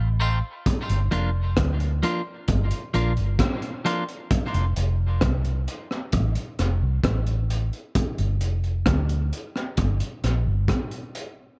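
Dub reggae in G minor at 66 BPM, heavy and spacious, where a very quiet, mellow tonewheel organ with slow rotary speaker and key click sounds briefly at the opening over a round, foam-muted vintage fingered electric bass, a clean, compressed electric guitar with tape echo plays until 4.0 seconds, and a crunchy breakbeat drum kit of hi-hat, rim click and punchy kick enters at 0.7 seconds with a gritty, saturated, rolled-off tone, all set in an echo-heavy mix with light small-room reverb as the chords move between Gm7 and F.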